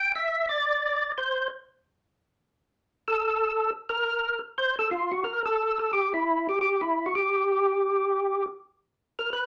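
Jazz with a bluesy, greasy mood, swinging briskly at 177 BPM in 4/4, this short cut from a longer piece features a percussive tonewheel organ playing solo from 0.0 to 9.5 seconds, ranging from E4 to G5. The organ sits up front with a fat, lightly overdriven tone, its third harmonic percussion and key click giving each note a crisp attack while a slow rotary speaker and chorus vibrato add movement. A moderate studio reverb gives the sound a modest sense of space.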